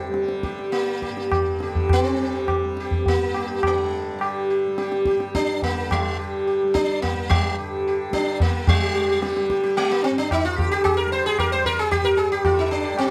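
Longing and introspective, this brief excerpt of Hindustani classical music in raga Bhairavi on G moves in a straight 4/4 that gradually speeds up from about 101 to 114 BPM, with a bright, plectrum-plucked sitar carrying the melody up front, its buzzing tone shimmering with sympathetic strings, over a softly plucked tanpura drone and low-tuned tabla with a short ring, all set in a small room with moderate reverb, the music shifting into a new section at 8.7 seconds.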